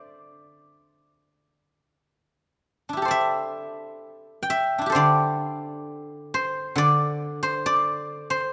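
A solo guzheng, played with fingerpicks, rings out up front with a bright, silvery tone in this brief, pastoral passage of Chinese traditional music, cut from a longer piece and lasting 8.5 seconds. The mood is serene and the time is a loose rubato around 62-70 BPM in 4/4, set in the D shang mode and ranging from D3 to G5. Light reverb surrounds the instrument, and a new section begins at 3.1 seconds.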